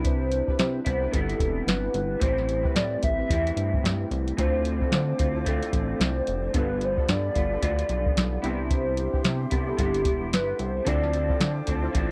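Indie bedroom pop with a hazy, wistful mood, cut from a longer piece and lightly swung in 4/4. A soft vintage rhythm box sits up front with a deep kick, tonal snare and metallic hats, beside a glossy, retro chorused synth bass built from pulse and sawtooth tones with a quick filter pluck. Electric guitar through a small old amp adds dark, slightly broken-up, compressed fingered parts colored by analog chorus and vibrato, while mellow, detuned analog keys with chorus and a cassette tape character decay in the background. From 0.1 seconds a hollow, woody clarinet-like synth lead carries the melody with chorus, vibrato and slapback echo, and at 4.4 seconds an airy, close-miked small flute group enters in the background with sustained chords. The sound is dry and close, like a 1970s-style studio recording, moving through chords such as Cmaj7, Am7, Dm7 and G7.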